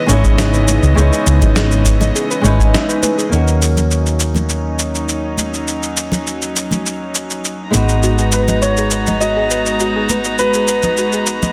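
A thumb-plucked flamenco guitar with a delay, a rich, bowed chamber string section playing soft-attack sustained chords through a low-pass filter, and a soft, round synth pluck tracing chorused, delayed arpeggios in the background open this smooth, relaxed sunset chillout passage at 102 BPM in a straight 4/4. A punchy, hollow-body electric bass sits up front almost at once, joined by a gritty, sampler-style electronic cabasa and snare, a deep, tape-warm electronic kick that drops out by 2.7 s, and close, dry congas struck with hard hands. From 3.3 s a filter sweep moves through the strings as the harmony shifts from C#m9 to D#m7 and later G#m7, while the pluck falls silent until returning at 8.0 s. A dark, mellow grand piano enters at 8.3 s with a short melody carrying its own delay. The whole mix sits in a moderate plate reverb with a dense, heavily limited modern master, and the passage is cut from a longer piece.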